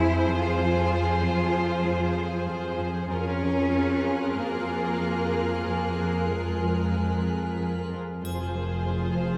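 In a straight 4/4 pulse, this ominous, eerie suspense cue for film, cut from a longer piece, sets a focused violin section's melody over a smooth, even second violin line, a background viola accompaniment, an intense cello riff, a bright cello bass and a double bass section, all bowed with vibrato above a calm, detuned organ-like drone with chorus and its own reverb, while a delicate, bell-like celesta adds very quiet texture, a rich high violin section adds texture from 3.1 to 7.9 seconds, and a dry triangle enters at 8.2 seconds, the ensemble heard from further back in a wet scoring-stage space.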